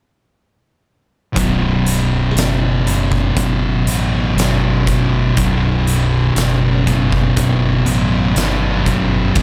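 Sludgy and brooding, this short stoner and doom metal excerpt crawls at 60 BPM in a straight 4/4 over a B5 chord, with two thick fuzz guitars playing a riff between B1 and B2 from about 1.3 seconds, one dark and up front and the other in the background, a fuzzed, overdriven fingered electric bass down to B0, and an oversized low-tuned acoustic drum kit with a boomy kick, fat snare, dark cymbals, gritty saturation and a pumping big-room sound, all dry with little reverb.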